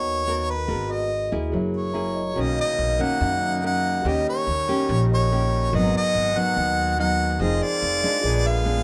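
A smooth, melancholic bossa nova in a straight four opens with four parts together: a close-miked harmonica carries the jazz-style melody up front, its scooped notes and light vibrato sitting over fingerpicked nylon-string guitar. The guitar is full-bodied with a deep classical character, while a pizzicato upright bass on steel strings supplies a woody low end. A clean tine electric piano, heard through its built-in speakers, stays in the background and adds a short fill from 1.7 to 2.4 seconds. At 2.4 seconds the music moves into a new section, and a reedy, mid-forward accordion enters in the background with sustained chords. Rich ninth and seventh chords shade the harmony, and a light reverb gives this passage, cut from a longer piece, a gentle sense of space.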